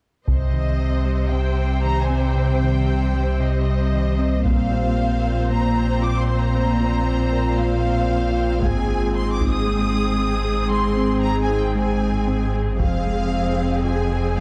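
A deep, clean sine sub bass sits up front beneath lush, vibrato-rich violins carrying the high melody, intense violas and focused cellos in this vast, futuristic hybrid orchestral and electronic film-score passage in C minor at 115 BPM, while a warbling, nostalgic tape-like pad holds chorused chords, a round, tine-like thumb-piano synth pluck spins delayed arpeggios in the background, and a heavy-sticked taiko ensemble strikes at 0.3, 4.5, 8.6 and 12.8 seconds as the harmony moves from Cm through Bbsus2 and Ab to Fm, all set in a moderate concert-hall reverb.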